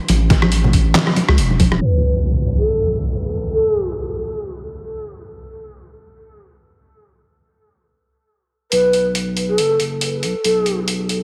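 This excerpt from a longer deep dubstep piece opens on a drop at 139 BPM in a swung, half-time feel, with a deep, thick, saturated sine sub bass up front and a gritty, pitched-down trip hop drum kit of handclaps, hi-hat, rim click and a medium-tuned snare, its hats and snare darkened by a low-pass filter. Bright, damped congas played with soft hands add a vintage, band-limited layer, while a thumpy electronic kick with a tape-warm, compressed character sits beneath. At 1.8 seconds the beat drops away as an electronic impact hits and a breathy, mellow low ney enters up front, its reed-cane tone carrying vibrato and a dub echo. The bass, drum kit and ney return at 8.7 seconds for a build-up with a filter sweep, the harmony shifting to B5. The mood is heavy yet meditative, set in a lush digital hall reverb and squeezed into a heavily compressed, radio-like sound.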